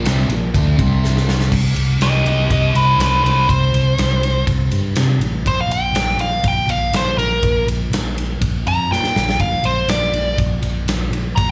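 A nasal lead guitar with a parked wah takes over from 2.0 seconds, its overdriven, picked solo sitting up front with a slapback echo and ranging from E4 to Bb5. This is a swaggering, gritty blues rock power trio cut with a southern rock edge, moving at 122 BPM in a straight 4/4 and taken from a longer piece. It opens on a double-tracked fuzz guitar riff, distorted and touched with slapback echo, that plays only until 1.5 seconds over Bb5 and C5 chords before the harmony drops out. A growly, amped picked electric bass stays up front throughout, while a big rock drum kit with a punchy kick, medium-tuned snare, crash and ride cymbals rings in a big room with a rolled-off top, adding fills at 1.0 and 8.9 seconds. The sound is that of a live club gig heard through the venue's PA, with a touch of club reverb giving it a raw, in-the-room feel.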